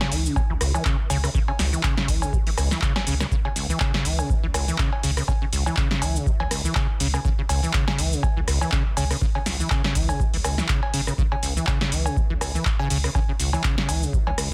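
Acid house at 122 BPM in 4/4 with a 16th-note swing, this trippy, raw excerpt from a longer piece sits on a single C# minor chord in a C# minor pentatonic setting. A rubbery, resonant sawtooth acid bass plays a riff between C#2 and E3 from the start, its filter-plucked notes saturated and dark, colored by analog chorus, sidechain pumping and dub echo. Beneath it, a round sine sub bass enters at 0.1 seconds, holding sustained, mellow tones from G#1 to C#2 with its own sidechain pumping. An up-front electro analog drum machine supplies cowbell, handclaps, metallic hats, rim click, shaker and a punchy snare, with a short room on the snare, clap and hats, while an electronic kick drum with a deep analog thump joins at 0.4 seconds. Both drum parts sound re-recorded in a large room, and the whole sits under light reverb in a dense, heavily limited modern master.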